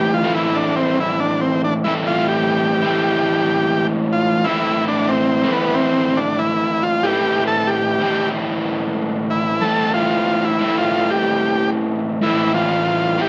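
A small, wet room surrounds this live band recording, with a short reverb tail that keeps the sound close and intimate. It is a hypnotic, mysterious rock piece in A minor at 93 BPM, in a straight 4/4 feel, tuned to A4 = 439 Hz and cut from a longer performance. A vintage transistor combo organ carries the melody up front, its clean, buzzy tone shimmering under heavy vibrato as it solos between B3 and A4. Beneath it, a crunchy, overdriven electric guitar plays a picked, double-tracked riff from A2 to E4, sitting up front as well. Both parts play together for the full 13.3 seconds over a single A minor chord, and that unchanging harmony gives the passage its trance-like pull.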